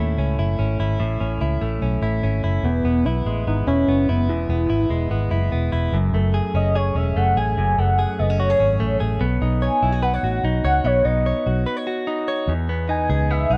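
Jangly indie pop with a breezy, bright mood, this short cut from a longer piece moves in a straight four-beat feel. A clean, direct-recorded electric guitar plays picked arpeggios up front, its compressed tone trailed by analog delay. Beneath it, a vintage muted fingered electric bass sits dark, round and punchy, also close in the mix. At 2.6 seconds a velvety synth lead enters with the melody, its sawtooth and triangle waves in unison given a wave-folded edge, a fast attack, sustained notes, vibrato and chorus for a smooth, mellow voice. The chords move from A and E through F#madd9 and Badd9, a brief break arrives at 11.7 seconds, and the piece settles on Emaj7 at 12.5 seconds. The whole recording sits in light reverb with a worn, warbling old cassette-tape character and warbly pitch drift.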